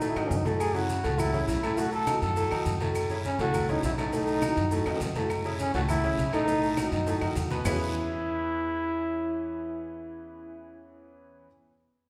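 A church-like hall with a long, wet reverb gives this festive, joyful salsa excerpt at 204 BPM in E major a spacious, ringing glow. Up front, a bright, punchy trombone with a vintage pop-style edge carries the solo melody, while a brilliant, polished upright piano with long sustain supplies the accompaniment over a dark, thumpy pizzicato upright bass on gut strings. A full percussion section drives the first part: soft, low-tuned congas with a thick skin, ringing metal-shelled agogo bells and timbales in the background, grainy maracas, woody claves and a raspy, close guiro, punctuated by short drum fills. The harmony rocks between B7 and F#m7 before settling on E6 at 7.7 seconds, where the percussion drops away. The trombone rings on until 10.8 seconds, and piano and bass carry the closing moments to 11.5 seconds.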